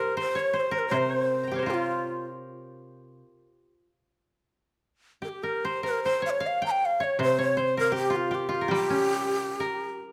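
A close, detailed recording with light reverb captures this austere, calm passage of Japanese chamber music, cut from a longer piece and moving with a free, rubato feel in 2/4. An end-blown bamboo shakuhachi carries the melody up front, its breathy, bright tone marked by vibrato, tongued chiff and an unsteady quality. It sounds from the opening until 2.3 seconds, falls silent, then returns at 5.2 seconds. A koto, woody and plucked with fingerpicks, plays a second line throughout in the same upper register, its dry, close tone set forward. A second, more mellow koto supplies a lower accompaniment, pausing after 3.2 seconds and rejoining at 7.2 seconds.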